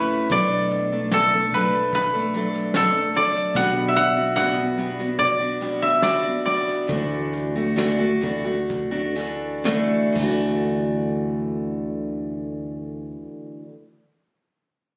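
This acoustic folk piece in D major is peaceful and gentle, moving in a straight 4/4 at 58-74 BPM and slowing from 3.6 to 10.7 seconds. A woody koto, played with fingerpicks and set up front with a touch of plate reverb, carries the melody until 9.6 seconds. A bright, full-bodied dreadnought steel-string guitar, also up front, supplies picked accompaniment and rings on until 13.7 seconds. A fingered electric bass, round and punchy with a dark, direct tone, sits low beneath them. A soft brush kit with dark cymbals, a fat snare and a tight kick plays in a small-room sound until 10.4 seconds. The chords move from Bm7 to Gmaj7/B to Dadd9 before a short second section. Captured on a phone in a studio with moderate ambience, this passage is cut from a longer piece.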